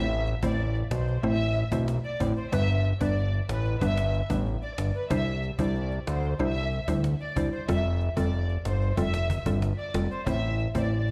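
A distant, lush violin section with vibrato and tape echo carries the melody over woody, round synth plucks with chorus, a fat, saturated analog bass sitting up front, and a snappy, dry cajon entering at 0.1 seconds, in this tough, sultry 93 BPM dancehall excerpt in A minor that moves through Am, G, Cadd9 and Fadd9, the mix sounding as if played through a big sound system in a bare stone room.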